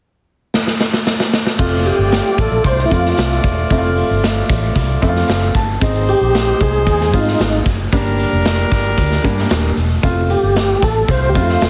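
Heavily compressed with a radio-like sound and light reverb, this excerpt of uptempo 1960s-style soul in F major moves at 114 BPM with a danceable, uplifting feel. A raw, gritty garage drum kit with a punchy kick and a bright stone-room ambience opens with a fill at 0.5 seconds. At 1.6 seconds a dark, round, foam-muted fingered bass, a natural-sounding baby grand piano and a tight, vintage horn section playing a second line join in. From 1.9 seconds a lightly overdriven tonewheel organ with key click, chorus vibrato and a slow rotary speaker carries the melody, while the piano adds a brief fill at 5.0 seconds over chords moving from F through Ab and Gm back to F.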